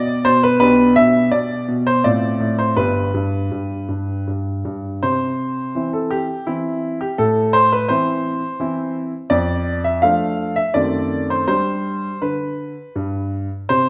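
Bathed in the wet reverb of a recital hall, an up-front, smooth, vintage-toned grand piano plays alone through this elegant, dramatic classical-period sonatina fragment in a straight 3/4 at 83 BPM, tuned to A4 = 441 Hz and ranging from G1 to F5, moving from an opening phrase over G/B, F/A and G into a contrasting passage at 5.0 s that travels through C, Am and Dm/F before a tense F#dim7 resolves to G.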